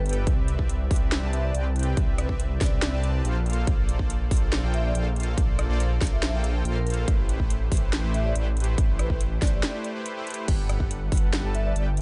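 A thick, detuned saw bass with chorus pumps up front through this lush, playful future bass drop at 141 BPM in a half-time feel, alongside a punchy, tape-warm electronic kick that enters at 0.3 seconds, a trap kit with a sharp snare and metallic hats, a smooth, soft-attack supersaw riff that also pumps to the sidechain, and a ringing vibraphone melody with fast motor vibrato and dub echo sitting in the background, all moving over Cmaj7, Bbmaj7, Am7 and Gmaj9 chords with a brief break at 9.6 seconds in a dry mix.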